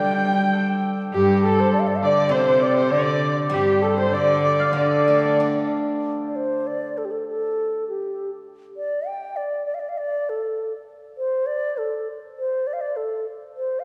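A rubato line in 4/4 near 100 BPM opens this graceful, wistful passage of Chinese traditional chamber music in D yu mode. An airy, close-miked bamboo xiao carries the melody up front, joined at first by a boxy erhu with vibrato and portamento, a floating sul tasto cello, a shimmering hammered dulcimer and a silvery fingerpicked zither. The cello and erhu fall away by 5.7 s and the dulcimer by 7.2 s, leaving the xiao singing alone in a reverberant concert hall until 13.8 s.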